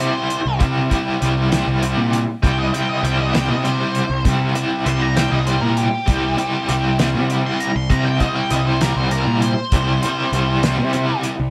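Dark and trippy, this short psychedelic rock excerpt rolls along at 66 BPM in a 6/8 metre, resting on a C major chord throughout. An octave-fuzz lead guitar takes a solo across the full 11.5 seconds, its dark, distorted tone ranging from G4 up to C6 and sitting back in the mix. Beneath it, a biting overdriven guitar plays the riff up front, double-tracked and pulsing with tremolo. A fuzz picked electric bass, direct and amped with overdrive, holds the low end between C2 and C3. A damped 70s drum kit, dry and smooth with a fat snare, tight kick, hi-hat and a rolled-off top, completes the sound of a band playing live in one room under light reverb.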